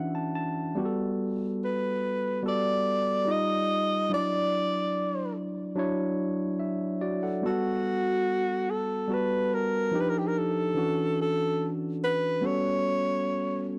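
A dry, close 1970s-style studio sound with light reverb frames this lush, romantic soul passage in D major, moving at 72 BPM in a straight 4/4. A bright, barky tine electric piano with light overdrive sits up front, opening with a short fill and carrying the chords from Dmaj9 and Gmaj9 through Eb colours and back before settling on A13. From 1.6 s a breathy alto saxophone takes the melody, its subtone, soft attack and light vibrato giving the close-miked solo a whispered, intimate jazz character.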